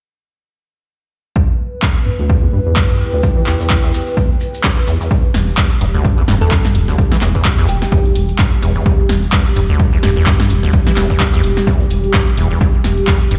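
At 1.4 s a punchy, up-front kick and a rubbery, resonant, saturated acid bass riff under a filter sweep open this gritty, raw 128 BPM acid house cut in E minor with a 16th-note swing, soon joined by tape-toned drum-machine claps, hats and snare, a moody detuned analog pad, briefly a warbling lo-fi tape-like pad with grainy maracas, then from 5.3 s a round, evolving sub bass and, at 6.4 s, a gentle tine-like FM pluck melody with tape echo, the pads and basses pumping to the kick in a big, reverberant room.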